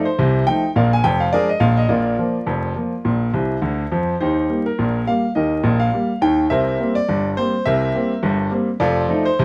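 Jaunty and lively, this short ragtime excerpt features a clear, natural grand piano playing solo and up front in a swung 2/4, with a fill from 3.3 to 4.2 seconds, moderate studio reverb and a vinyl crackle over the recording.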